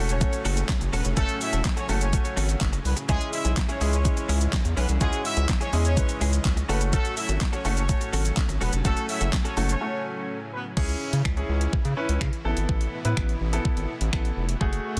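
A round, deep analog bass pumps under a clear baby grand piano and a lush, detuned supersaw pad from the start of this energetic, bittersweet dance-pop excerpt in C# minor at 125 BPM, joined at 0.1 seconds by an overdriven pop kit with a knocking kick, fat snare, handclaps and finger snaps, and a distant, roomy horn section carrying the melody through tape echo, while a clean, direct-recorded electric guitar riff with subtle chorus sits in the background until 9.8 seconds, all in a dense, heavily limited modern master.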